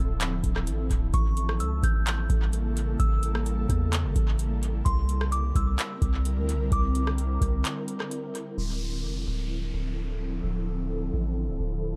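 A dry, echo-heavy mix frames this hazy, spacious cloud-rap excerpt at 129 BPM in a half-time 4/4 feel in D minor. A delicate, tinkling FM bell carries the high melody through chorus, phaser, tremolo and tape echo over an ethereal, detuned pad that pumps softly against the beat, while a deep sine 808 bass sits up front beneath Dm9, A7b9 and C9 chords. A booming analog drum machine, with its deep kick, metallic hats, handclaps and rim clicks smeared by tape echo, falls away by 8.5 s, and at 8.6 s an electronic downlifter and filter sweep arrive alongside the lingering bell, pad and bass.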